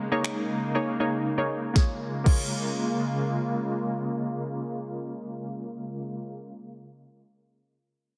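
A driving, bittersweet dance-pop excerpt in Bb minor at 119 BPM, built on a lush, thick sawtooth unison pad holding sustained chords with chorus, tremolo and sidechain pumping, moving from Eb7sus4 to Bbm7 at 1.8 seconds. A hollow, bouncy square-wave pluck with a filter sweep plays accompaniment alongside it, while an electronic, overdriven R&B drum kit with a soft kick, sharp snare, finger snaps and crash cymbal sits up front until 2.4 seconds. A brief silent gap opens at 1.3 seconds, and the light reverb and dense, heavily limited master give the excerpt a polished, compact sound.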